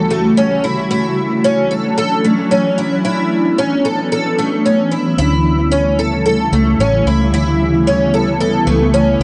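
A straight 4/4 pulse at 112 BPM carries this blissful, floating dream pop excerpt in D major, where a cloudy, evolving granular pad holds sustained chords and a woody, shimmering twelve-string acoustic guitar picks octave-doubled arpeggios through analog chorus and delay, both up front over chords moving from A7/D to Dmaj9 and on to A7, until a round, punchy, foam-muted electric bass with transformer saturation enters at 5.2 seconds, all captured in a dry, gritty booth recording.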